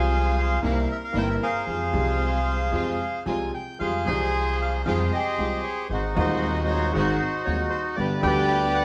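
Through a haze of vinyl crackle and the moderate reverb of a large room where the band plays live together, this melancholic, sultry tango fragment unfolds with a rubato feel, as a reedy, vintage bandoneon sings the melody up front over a polished, present baby grand piano, woody pizzicato upright bass and lush bowed string stabs with vibrato and a soft attack in the background, its harmony moving from F minor toward a closing G chord at 8.0 seconds.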